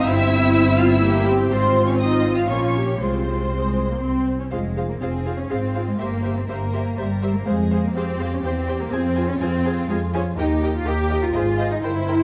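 A rich, focused first violin section carries the melody over a distant second violin line with a soft attack and portamento, a clear viola accompaniment, smooth cellos and up-front double basses, all bowed with vibrato from the opening of this dramatic, restless classical-period string excerpt in quick triple time, set in a moderate scoring-stage reverb with a dark, warm production and vinyl crackle.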